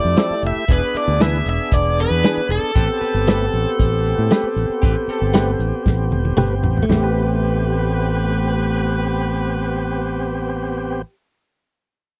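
An up-front overdriven electric guitar sings a mournful melody over a straight-eighth soul blues groove, falling silent at 6.3 seconds as the dark, tight soul drum kit with tambourine plays a fill from 5.9 seconds and then drops out at 7.0 seconds. A round fingered bass anchors the low end while a thick, lightly overdriven tonewheel organ through a slow rotary speaker fills out the accompaniment and a twangy, compressed clean guitar with analog chorus adds stabs. A bright horn section holds soft sustained chords beneath them. The smoky, dry, close 1970s-style studio sound carries the passage from Fmaj7 and E7 into Am9.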